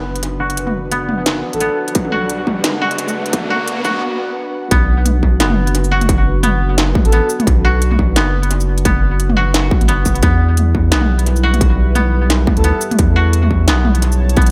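Tense and dark, this half-time drum and bass cut from a longer piece runs at 174 BPM in B minor, with a swung sixteenth feel that moves from Bm to Em at 10.2 seconds. A deep, detuned sawtooth pad holds moody sustained chords with chorus and sidechain pumping, while a woody, fingerpicked koto plays arpeggios through a low-pass filter and analog delay, its filter sweep shaping the build-up over the opening 4.7 seconds. Beneath them, a thick, saturated sub bass sits up front, and an electronic riser sounds between 0.9 and 4.0 seconds before a brief break. An overdriven industrial kit with a clanging snare, crisp hats, shaker and toms enters at 0.2 seconds and is joined by a distorted electronic kick at 2.0 seconds, carrying the groove into the drop at 4.7 seconds. A breathy, flute-like synth lead with vibrato and chorus appears only in short touches on A4, floating over an echo-heavy mix with light reverb.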